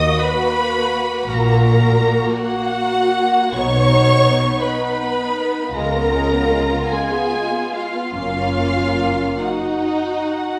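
Tender and warm, this short excerpt from a slow romantic movement for string orchestra drifts in 12/8 at a rubato pace of roughly 47 to 56 dotted-quarter beats per minute, in F# major, moving from D#m through B and C#7 to F#. Up-front violins carry an expressive melody with vibrato and portamento while a second violin line runs smooth and even beneath it, dark violas give bowed accompaniment, and a warm cello section joins woody, distant double basses on the bass until both stop at 9.2 seconds. The upper strings continue to 10.6 seconds, all of it bathed in the reverberant glow of a recital hall.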